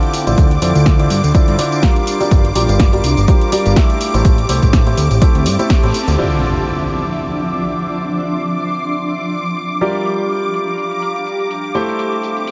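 Piano house at 124 BPM in D minor, bittersweet yet energetic, this cut from a longer piece rides a swung 16th groove as a clear, up-front grand piano riff, shimmering vintage string-machine violin chords and a cloudy, blurred granular pad all pump against the sidechain over a Dm9, Gm7 and Am7 progression. A fat, nasal, detuned analog bass and an overdriven, punchy electronic kick drive the first half until the kick drops out at 5.8 seconds and the bass at 6.2 seconds, when an electronic impact hits and a filter sweeps across the analog drum machine's overdriven hi-hats, snare and tambourine. The whole mix is dreamy and soaked in a huge reverb, with the top end rolled off.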